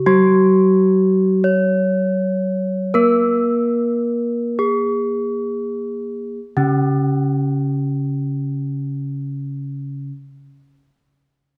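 A bronze gamelan-type metallophone struck with a wooden mallet carries the ringing melody between C#4 and C#5, close and full at the front of this ceremonial, shimmering gamelan excerpt. A second metallophone, brighter under a horn mallet, supplies the lower accompaniment from C#3 to A#3+20c; both play from 0.0 to 10.1 seconds in a slow 4/4 at 32-45 BPM that slows down through the first 6.4 seconds. A dark, warm production and a wet concert hall reverb surround the pair, tuned to A4 = 441 Hz, and a new section begins at 6.4 seconds.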